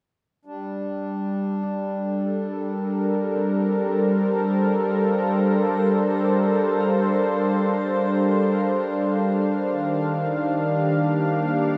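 A slow, straight 4/4 pulse at 52 BPM drifts beneath this serene, reflective ambient fragment in G minor, cut from a longer piece. An up-front analog pad holds sustained chords from 0.5 seconds, its detuned sawtooth tone warbling with chorus, a slow attack and a vintage smoothness, all trailed by shimmer reverb. Beneath it, a pedal harmonium sits in the background with a reedy, breathing drone. From 1.6 seconds, a barely audible concert harp adds fingerpicked, ringing arpeggios. The harmony rests on Gm11 before shifting to Ebmaj7 at 9.7 seconds, and a long plate reverb soaks the whole mix in a dreamy haze.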